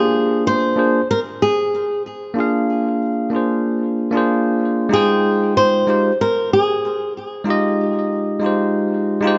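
A gently swung 16th-note feel at 94 BPM in 4/4 carries this smooth, relaxed chillout excerpt in F dorian, tuned slightly flat, moving from Bb9 to Fm9 at 4.9 seconds. A fingerpicked flamenco guitar with fresh strings and a digital delay carries the melody up front until 7.1 seconds. A bright, bell-like tine electric piano accompanies throughout, clean and direct through tape echo and a low-pass filter sweep, all set in a moderate scoring-stage reverb with a soft, rolled-off top end.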